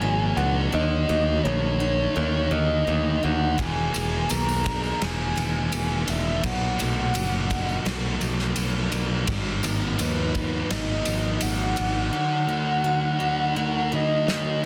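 A dark fuzz guitar riff sits up front in this blissful, dreamy shoegaze and dream pop excerpt, alongside a bright, growly picked bass and a round, mellow octave-layered synth lead that carries the melody with chorus, vibrato and slapback echo. Further back, a shimmering twelve-string acoustic guitar picks arpeggios through lush chorus, while a clean, direct-recorded electric guitar riff is barely audible. A loose indie drum kit with a punchy kick, snare and ride enters at 3.6 seconds, joined moments later by a jingly tambourine, and a drum fill at 14.3 seconds closes the passage under light reverb and a dense, heavily limited master.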